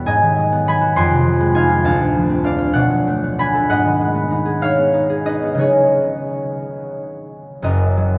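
A cathedral's long, wet reverb, with a decay of about 5.5 seconds, surrounds this short excerpt, placing the music in a vast, echoing space. At its centre is a solo concert harp, heard up front, its thumb-plucked strings sounding warm and ringing across a range from F#1 up to C6. This is a classical piece in 6/8, moving at roughly 58 to 69 dotted-quarter beats per minute with a graceful, rubato feel that keeps the pulse flexible. The harmony drifts through a chain of minor seventh chords, G#m7, Fm7, Dm7 and Bm7, before returning to G#m7 and settling on C#9sus4. It finally arrives on F#6 at 7.6 seconds, and the harp rings on until 8.2 seconds, leaving a serene, suspended calm.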